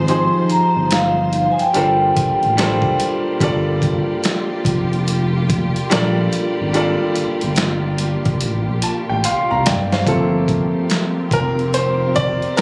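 A ringing, metallic vibraphone with tape echo sings a brief melody over the opening 3.0 seconds of this smooth, sultry neo-soul R&B excerpt in G minor at 72 BPM with a swung 16th feel, while a brilliant grand piano sits up front in accompaniment, lush bowed strings hold sustained chords, a dark sawtooth synth bass sustains underneath, and a gritty, compressed sampler-style kit of finger snaps, hi-hat, thumpy kick and snare drives the groove, with drum and piano fills from 8.4 seconds leading into a piano solo at 10.1 seconds, all set in a small room with club reverb and the sound of a phone recording.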